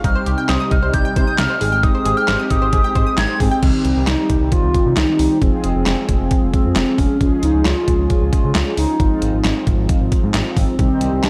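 Synth-pop at 134 BPM in a straight 4/4, this short cut from a longer piece has a melancholic, cool mood over a minor-leaning progression that starts on Cm and moves through Abmaj7, Fm, Db and Ab6. A hollow, woody square-and-triangle lead carries the melody across its full length, its soft tone shaded with vibrato, chorus, phaser and analog delay. Beneath it, a mellow, round synth brass with a detuned, ring-modulated edge and a filter sweep supplies the accompaniment. A smooth, gliding bass with portamento and vibrato anchors the low end. A detuned 8-bit drum machine sits up front, with a thumpy kick, a medium-tuned snare, handclaps, hi-hat and crash, its tape-warm sound re-recorded in a large room. An airy, evolving pad and a bright, wave-folded analog pluck playing arpeggios fill out the opening until 3.6 seconds; the pad returns at 10.8 seconds, and the mix overall carries little reverb.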